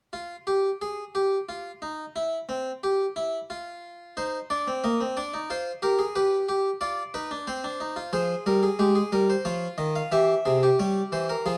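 A single bright, plucked French-style harpsichord, strung with one set of strings and placed up front, opens this baroque-style three-part fugue in 3/4, its voices spanning C3 to F5 and tuned slightly below modern pitch at A4 = 436 Hz. The mood is driving and serious: the opening line is unharmonised before the counterpoint settles onto C minor at 4.2 seconds and moves through G7, F minor and D-flat colours toward a C7 at 10.1 seconds. A wet stone-room reverb and a dark, warm production surround the instrument in this brief fragment cut from a longer piece.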